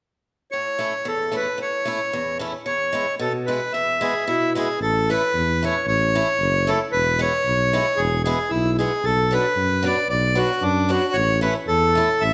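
A bouncy, straight 2/4 pulse at 113 BPM in A major drives this jolly alpine folk dance band excerpt, where a reedy, hollow, close-miked accordion carries the melody up front over a bright, boxy picked swing-style acoustic guitar, joined at 4.8 s by a mellow, soft-attacked tuba playing a classical-style bass, all set in a recital hall reverb.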